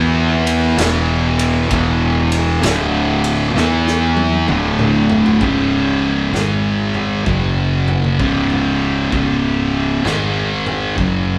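A slow 65 BPM swung 4/4 groove in C# phrygian drives this brooding, ominous stoner and doom metal excerpt, where a dark and a warm up-front thick fuzz guitar and a growly overdriven fingered bass grind through riffs while a bright double-tracked fuzz guitar adds its edge until 5.4 seconds, and a gritty, rolled-off garage drum kit with punchy kick and pumping room sound enters at 0.5 seconds and plays a fill from 3.6 seconds, all bathed in a wet large-studio reverb that captures a band playing live in one room.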